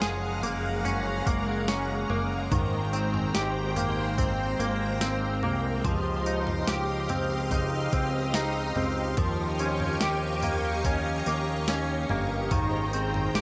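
A clean, compressed semi-hollow electric guitar sits up front in this dream pop excerpt, spinning arpeggios through ensemble chorus and tape echo across the full 13.4 seconds. Behind it, a shimmering vintage string machine holds sustained violin chords with a soft attack and long release, its bright sawtooth tone thickened by its own ensemble chorus. A fat analog bass, thick and nasal with a detuned, saturated edge, anchors the low end, while a crisp 8-bit digital drum machine supplies a thumpy kick, medium-tuned snare, tambourine and toms. The mood is floating and dreamy at a slow 72 BPM in straight 4/4, moving through Gbmaj9, Abmaj9, Dbmaj9#11 and Eb9 before settling back on Abmaj9 in Ab major. A huge ambient reverb with a long 8.7-second tail washes over the whole mix, blurring the parts into a hazy, suspended space.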